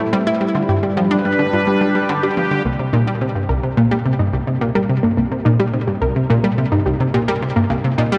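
Ambient, sequencer-driven space music in C minor at 107 BPM, mysterious and expansive, where a round, detuned analog pluck riff with chorus and delay sits up front over an evolving, ring-modulated resonant pad holding sustained chords and a lush, punchy unison pluck playing arpeggios with delay in the background from 0.1 seconds, all bathed in a vast cathedral reverb as the harmony moves from G7 to Cm7 at 2.7 seconds in this brief cut from a longer piece.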